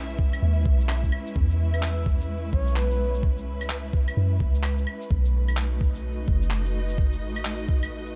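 This ghostly, melancholic future garage fragment, cut from a longer piece, moves at 128 BPM in 4/4 with swung 16ths. Lush, bowed symphonic strings hold sustained chords through C#m7, E6 and B7, carrying a vintage 12-bit sampler grit and sidechain pumping, over a deep, round, soft 808-style bass and a thumpy, muffled kick that both sit up front. Pitched-down, tape-hued shaker, claves and handclaps add a studio-reverb sheen, and a breathy, flute-like synth lead with subtle chorus and digital delay surfaces briefly from 1.7 to 3.1 seconds, all within a dark, dry production.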